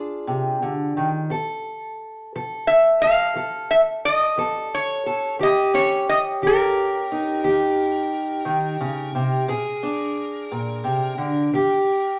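A fingerpicked, boxy steel-string parlour guitar opens this laid-back, gritty country blues excerpt in a slow, straight 12/8 feel, joined at 2.7 seconds by an up-front, metallic, nasal resonator slide guitar played with fingerpicks carrying the melody over chords moving through F and Eb7, all set in a moderate studio reverb.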